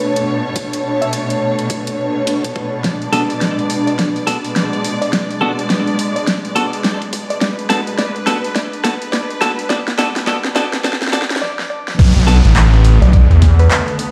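Heard through a big sound system in a bare stone room, with vinyl crackle and a thinned low end, this playful, funky glitch hop excerpt swings at 105 BPM in B dorian over a Bm7 chord. Clear, bowed studio strings with vibrato hold sustained chords while a blurred, cloudy granular pad adds texture, both under sidechain pumping. A dark, woody wave-folded pluck carries the melody with chorus and delay, and a clean, picked electric guitar adds filtered, delayed stabs from 3.1 s. An overdriven dubstep kit with a huge snare sits up front over a knocking kick, building through a filter sweep, drum fills and a short break until the drop at 12.0 s, where a gritty, aggressive sawtooth synth bass bursts in alongside an electronic downlifter.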